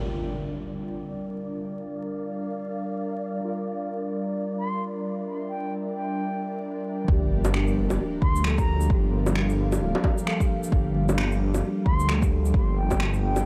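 A menacing, detuned saw bass with tube saturation and sidechain pumping surges in at 7.1 seconds alongside an overdriven, deep kick, with layered electronic bongos, shaker and finger snaps following moments later. Together they lift this nocturnal, wistful future garage excerpt in G dorian at 132 BPM with a 16th-note swing. Before that, an ethereal pad with gritty 12-bit character and muted, felt-like synth keys carry a Gm7 mood, while a breathy wind-like noise texture drifts in from 0.9 seconds and impact-and-sub-drop effects mark each section's start. A distant, mellow concert flute sings the melody through tape echo from 4.6 seconds, all framed by a dry, hardware-recorded sound with vinyl crackle.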